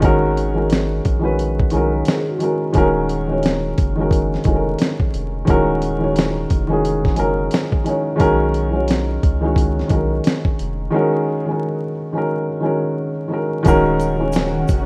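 Lo-fi hip hop in Eb minor at 88 BPM with a swung, melancholic and nostalgic feel, cut from a longer piece: a felt-muted upright piano, intimate and up front with cassette-tape colour, moves through Abm9, Ebm7 and Bmaj9 over a deep, round sub bass and a gritty, compressed sampler-style kit with thumpy kick and fat snare, while a ringing vibraphone surfaces briefly at 1.9 seconds, and after a break from 10.9 seconds a grainy tube shaker and a cloudy, blurred granular pad join in the background near the end, all under a rough home-demo mix with vinyl crackle.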